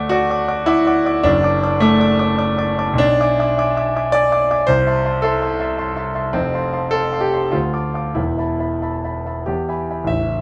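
A romantic-era classical character piece for solo piano, this short passage carries a bittersweet, brooding mood in a triple metre shaped by expressive rubato. The grand piano plays alone from 0.0 to 10.4 seconds, its tone present and polished with a long sustain, sitting up front in the sound. Its range stretches from the deep A0 in the bass up to D6, giving the harmony both weight and glow. The harmony wanders from D major through D/F#, E7/B and Am/C before settling on F and D minor, then leans into Esus4 and resolves to E, leaving the phrase poised and unresolved. A moderate stone-room reverb surrounds the instrument, lending a cool, spacious halo to its sustained notes.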